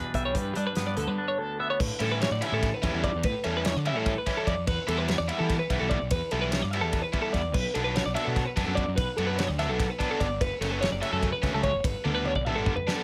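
Math rock with a midwest emo streak, this wistful, playful passage, cut from a longer piece, races along at 293 BPM counted in eighths in an odd 7/8 metre. A bright, clean twelve-string electric guitar spins shimmering arpeggios coloured by harmonic tremolo, while a twangy electric guitar adds picked accompaniment only in the opening seconds before dropping out at 3.2 seconds. The overdriven electric guitar enters at 2.0 seconds with a double-tracked riff that sits up front, and a dark, round fuzz bass, fingered and punchy, anchors the low end. A loose indie drum kit with a fat snare, tight kick and rolled-off top, recorded in a small room, drives the groove across crash, ride, hi-hat and toms, closing with a fill from 12.0 seconds. The harmony drifts from G69 through A7sus4, Em7, Bm7 and F#m before landing on G, all framed by light reverb.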